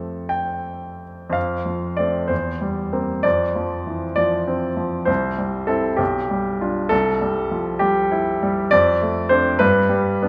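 A clear, polished baby grand piano sits up front, playing alone across this short cut from a lyrical, passionate romantic character piece in F major. The tempo is a flexible 65 beats per minute in 6/8, pulled by rubato and uneven beats, and the piano ranges from B1 to G5. Harmonies move from F through C7/E toward C, G7/B and Dm7/F before settling on G at 9.6 seconds, all carried by a moderate recital hall reverb.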